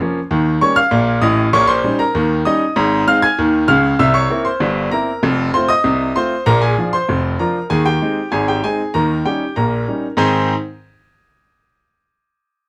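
Jaunty and playful, this ragtime fragment in Ab major moves at 97 BPM in a straight 2/4, with a clear, natural grand piano played solo and up front in a moderate studio ambience, spanning F1 to Ab6 as it works through Eb7, C7, F7 and Bb7 before landing on Ab at 10.2 seconds.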